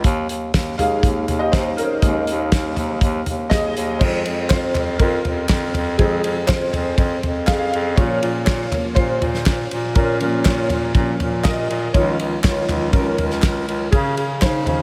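Piano-driven pop in F minor at 121 BPM, earnest and dramatic, built on a soft, felt-muted upright piano with an ensemble chorus effect, a clear, vintage bass clarinet, a loose indie drum kit with a fat snare, punchy kick and dark cymbals, and very quiet crisp group handclaps entering at 4.5 seconds, all set in a dreamy mix soaked in huge ambient reverb as the chords move from Ebsus4 to Fm, Bbm and Dbadd9 in this cut from a longer piece.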